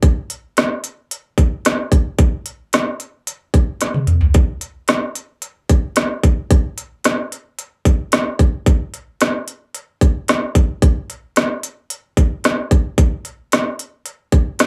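The recording sits in a small room with a moderate, short reverb, giving the impression of a band playing live together in one space. It is a brief cut from a longer blues piece, moving at a straight 111 BPM in 4/4 with a brooding, mournful mood. The only part is an organic electronic drum kit placed up front, combining hi-hat, kick drum, snare drum and toms across the full 14.7 seconds. Its character is electronic, produced and overdriven, with a tight kick, a woody snare and crisp hats, all re-recorded in the room. A drum fill arrives from 3.8 to 4.3 seconds.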